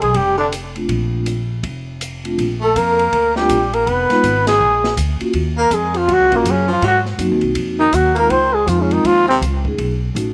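A dry outdoor sound frames this relaxed, swinging small-group jazz excerpt at 162 BPM in 4/4, where a raspy, growling trumpet with scooped notes carries the melody over a clear baritone saxophone second line, both touched with slapback echo. A woody, thumpy pizzicato upright bass and an open drum kit with dark cymbals and a boomy kick drive the swing, while a ringing vibraphone with soft mallets and slow motor vibrato joins at 0.8 seconds. The harmony moves from Bbmaj7 through Ebm9 and Dbmaj9 to B9, with a band accent at 4.4 seconds.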